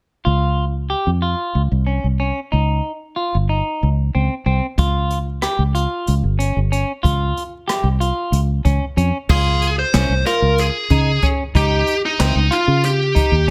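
Set in a straight, uneven 7/8, this bright, intricate progressive instrumental, cut from a longer piece, opens with a clean electric guitar picking arpeggios over a round, dark, foam-muted fingered bass that sits up front. A jazz brush kit enters at 4.8 seconds, its boomy kick, medium-tuned snare, rim clicks, hi-hat and crash carrying an acoustic studio-room character, as the harmony moves between Db and Eb13. At 9.3 seconds a biting, overdriven lead guitar takes the melody through plate reverb, and the chords later arrive at Dbadd9(#11), all within a light reverb.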